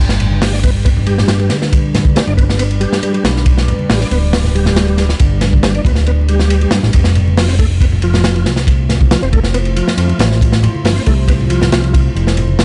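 A crunchy, gritty breakbeat drum kit with a tight kick and dark cymbals drives this funky, playful breaks excerpt at 138 BPM in G mixolydian, joined by a fat, saturated analog bass, a smooth tonewheel organ riff with key click, fast rotary speaker and digital delay entering at 0.4 s, very quiet bright congas, and a deep, moody ambient pad with sidechain pumping sitting in the background under vinyl crackle as the chords move from G to Fmaj7 at 6.9 s.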